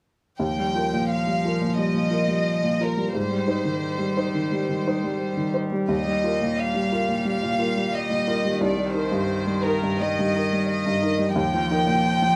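Heard from further back in a studio with a wet, short reverb, this tender, intimate neoclassical fragment in Eb major, tuned to A4 = 437 Hz, drifts at a rubato 88 BPM in 4/4: a felt-muted upright piano, mellow and up front with audible action noise, carries the accompaniment, while a warm chamber violin section sings the melody sul tasto with light vibrato and a rich, distant solo cello floats a second line beneath, the three parts entering together at 0.4 s over chords moving from Ebadd9 through Abmaj7 and Cm7 back to Ebadd9.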